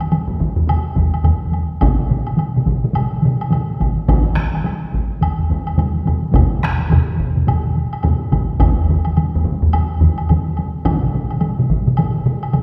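This is a driving, ceremonial piece of Japanese traditional taiko drum ensemble music, cut from a longer work and moving at 106 BPM in 4/4 with a 60% swing on the sixteenths. Four taiko groups carry the music. One group, struck with heavy sticks in a small room, sounds throughout. A second heavy-stick group sits up front, entering at 0.3 seconds and dropping out at 10.5 seconds. A third heavy-stick group, in a live room, joins almost at once. At 1.8 seconds a fourth group, played with hard sticks in a live room and placed up front, adds a sharper edge, while a woody woodblock keeps a thinner line beneath the drums from start to finish. The whole is bathed in a wet scoring-stage reverb with a 2.0-second decay and is heard from further back in the room, giving the ensemble a grand, resonant scale.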